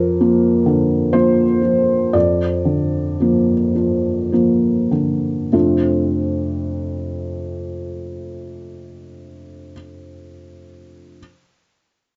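The recording sits close and hushed, with a light reverb around it and its upper frequencies rolled off above 7.6 kHz, giving a soft, darkened glow. This brief extract from a longer neoclassical minimalist piano work is intimate and hopeful in mood, set in F major with the tuning pitched at A4 = 444 Hz. A single felt-muted upright piano plays alone throughout, its thick felt lending a mellow, up-front tone that spans from F2 to D5. The pulse moves in a rubato 3/4 between 49 and 69 BPM, slowing down over the opening 5.5 seconds as the music rests on a Bb/F chord. At 5.5 seconds a new section begins, settling onto an F6 chord.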